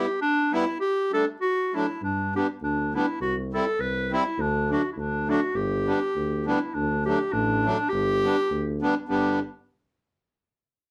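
A classical-style clarinet carries the melody up front from the very start, its tone warm in a bouncy, festive alpine folk dance. Beside it, an accordion plays the accompaniment in a reedy, clear voice with dry tuning, close-miked, full and up front. At 2.0 seconds a mellow, punchy tuba enters on the bass line, also in a classical style and sitting a little lower in the mix. The music moves in a lilting two-beat metre with a light swing and a rubato ease, its harmony settling from minor-tinged opening chords into a bright major progression. The band sounds as if it is playing live together in one small room whose wet reverb gives the trio a close, lively ambience, and the recording is a short cut from a longer piece.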